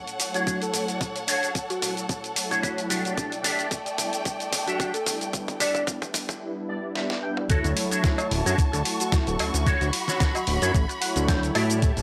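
A fat, detuned sawtooth bass arrives up front at 7.5 seconds, marking the drop in this sunny, feel-good nu-disco excerpt in D major at 111 BPM, with a gently swung 16th feel, over a thumpy, tape-warm electronic kick and a gritty, compressed sampler-style kit with a fat snare, hi-hat, shaker and toms. Through the build-up, drum fills and a filter sweep on the smooth, detuned analog pad lead toward the drop, while a dark, picked electric guitar riff through an envelope filter and chorus adds clean fills. A lush, bowed symphonic violin section pumps with sidechain, a round, mellow octave-layered synth lead carries the melody with chorus and analog delay, and a cowbell joins at 8.2 seconds, all in light reverb.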